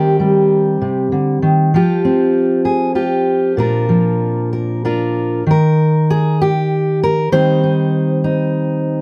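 A lone fingerpicked steel-string dreadnought guitar sits up front in this gentle, peaceful folk fragment, drifting with rubato at about 65 BPM in 6/8 and tuned to A4 = 439 Hz, moving through Cm/Eb, Fsus2 and Bb before a chordless passage at 5.5 s and a return to Cm/Eb at 7.3 s, all within a dark, warm production touched by light reverb.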